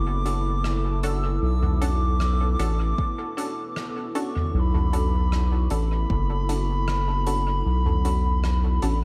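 Wrapped in vinyl crackle and light studio reverb, this spacious, deep ambient dub fragment at 77 BPM rests on a single Bm7 chord in B minor, where a round, up-front sub bass sits beneath a dark, detuned sawtooth pad with chorus, muted filtered chord stabs and a soft-mallet kit of hi-hat, rim click and toms both ring out in dub echo from 0.3 s, an overdriven, layered electronic kick thumps from 3.0 s to 6.3 s, and an airy, distant wooden flute with vibrato floats high above through its own dub echo.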